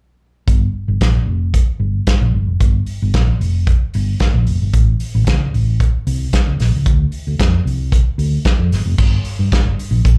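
Sultry and driving, this disco excerpt, cut from a longer live performance heard through a club's PA, pairs a round, amped hollow-body short-scale electric bass played with the fingers in its low register with an acoustic soul drum kit. The drums sit up front with a tight kick, a medium-tuned snare, dusky cymbals and hi-hat, a crash, and a mid-forward, rolled-off top, while the dark bass shares the front of the mix. Both play together from 0.5 seconds to the end, and the music shifts into a new section at 9.0 seconds.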